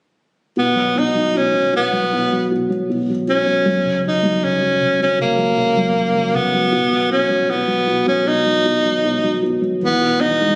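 Captured on a phone in the room, this short pop excerpt carries the light, club-style reverb of a venue, giving it a close and unpolished feel. At a slow 78 BPM in a straight 4/4, the piece sits in B major, tuned slightly flat to A4 = 436 Hz, and moves through B5, F#, B and E over about ten seconds. A felt-muted upright piano carries the accompaniment from 0.6 seconds in the low register, its thick felt lending a soft, dark and vintage tone, with the mechanical action noise clearly audible up front. Above it, an edgy tenor saxophone takes the solo melody in a pop style, with a light vibrato and a presence that sits forward in the sound. Both parts play together throughout, and the overall mood is tender and heartfelt.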